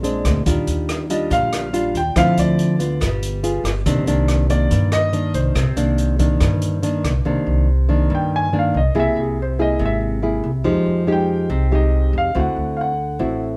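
Bossa nova in an intimate, melancholic mood, this excerpt of a band playing live in one room opens with an up-front, thumb-plucked nylon-string guitar, finger squeak and all, accompanying over woody pizzicato upright bass and a dark, rolled-off jazz kit of hi-hat, punchy kick and rim click. A warm, natural grand piano with audible action noise carries the melody from 1.1 s over chords such as Ebmaj9, Dm9, G7b9 and Cm9. The drums stop at 7.1 s, just before the piano takes a solo through Caug7, Fm9 and D9, all set in moderate studio reverb.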